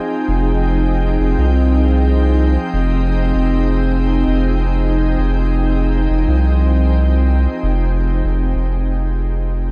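A soft, organ-like pad opens this ambient dub excerpt, holding sustained chords on an Fm9 harmony in F minor with a pure, calm tone that blooms in slowly and lingers on a long release. Its sound is shimmered by ensemble chorus and its own built-in reverb, giving it a bright presence up front in the mix. At 0.3 seconds a round analog bass joins, sitting deep in the low register with a fast attack and sustained, sine-like body. The tempo is 98 BPM in 4/4 with a gentle 16th-note swing, and the mood is meditative and spacious. The production is dark and warm with light reverb, and the piece fades out from 7.8 seconds to its end at 9.7 seconds.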